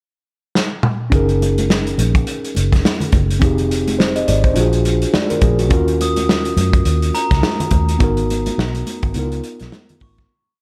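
Lush 1970s-style soul in F# major at 104 BPM with a 16th-note swing, romantic in mood, where a punchy, up-front soul drum kit enters with a fill in the pickup bar before a dark, foam-muted fingered electric bass with slides, a mellow tine electric piano holding rootless chords with grace notes and short fills, and high-tuned congas in the background join at 1.1 seconds over chords such as F#69, D#m9 and C#13, while a bright, sparkling glockenspiel with brass mallets scatters bell-like notes from 6.0 seconds through the fade-out that closes the whole piece.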